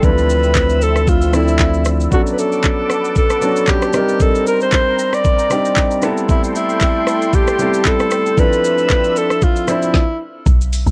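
Soulful and deep, this amapiano excerpt moves at 115 BPM in 4/4 with a gentle sixteenth-note swing, captured at home on cassette with light reverb. A breathy, intimate alto saxophone carries the melody up front, its soft attack and whispered tone colored by tape echo, while a vintage grand piano with long sustain plays the accompaniment. A lush, detuned sawtooth pad holds sustained chords in the background with chorus and sidechain pumping, and a thick, saturated sine sub bass sits up front only through the opening 2.1 seconds. The electronic R&B drum kit sets a knocking kick and woody snare among hi-hat, handclaps, rim click and shaker. The harmony runs through Dm9, Bm9, Cm9 and Am9 before returning to Dm9, and after a brief stop at 9.9 seconds a dark, round log drum bass lands at 10.5 seconds just as the passage is cut off.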